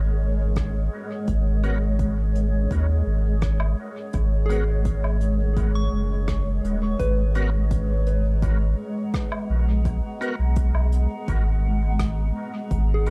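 A dark, hazy small-room sound with a faint lossy grain frames this meditative ambient dub excerpt in G# minor at 84 BPM, moving from a G#7sus2 chord to G#m9 at 7.0 seconds. A round sine sub bass sits up front beneath a blurred, evolving granular cloud pad of sustained chords, while a pure FM synth bell plays arpeggios through chorus, phaser and dub echo. From 0.6 seconds a deep, tape-warm electronic kick in the background and a brush kit of hi-hat, rim click and woodblock join in, with the kit sent through dub echo, and at 1.6 seconds a gritty overdriven tonewheel organ adds stabs with key click, chorus vibrato, slow rotary speaker and dub echo.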